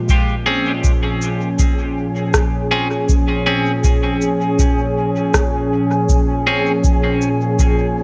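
Hazy and deep, this ambient dub excerpt moves at 80 BPM in Bb minor, resting on a single Bbm7 chord as a smooth, nasal analog pad with detuned sawtooth tones and chorus holds sustained chords up front. An electronic kick drum with a tape-warm, deep thump anchors the groove alongside a produced cabasa and rim click soaked in dub echo, both re-recorded in a small room. A bright, twangy clean electric guitar plays picked, compressed stabs with dub echo from 0.5 to 6.7 seconds, while an airy, wind-like tuned noise texture on Ab4 breathes in the background from 0.7 seconds through its own built-in reverb, all within light digital ambience.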